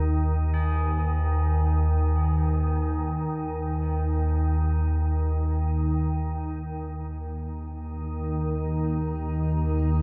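Dark ambient drone in free time, ominous and cavernous, cut from a longer piece and bathed in a long cathedral reverb with a 6.5-second decay. An up-front, organ-like drone, calm and wave-folded with ensemble chorus, sustains from Eb2 to Eb3 throughout, while distant, solemn tubular bells ring metallic arpeggios around Ab4 through a diffuse ambient delay and fade out over the first 6.8 seconds. At 7.8 seconds a cloudy, detuned granular pad enters in the background, its blurred, evolving chords spanning Bb3 to Eb5.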